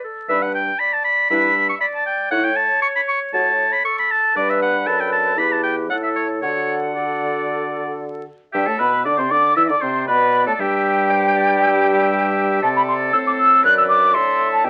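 Heard through the crackle of a very old 78 rpm record, this excerpt of a quick classical-period movement for wind quintet sits in a moderate studio reverb and moves at 118 BPM in a straight 4/4, with a cheerful, graceful mood. The clarinet sounds first at 0.0 s, distant and roomy, and the other four instruments join at 0.3 s. The concert flute carries the melody with a pure, expressive tone, soft attacks and vibrato. The up-front oboe, clear and smooth-topped with a light vibrato, supplies a second line alongside it. A mellow French horn and the clarinet fill in the accompaniment, while a dark bassoon with a light vibrato holds the bass. The music begins in D major and turns to G major at 8.5 s, closing on a D7 chord.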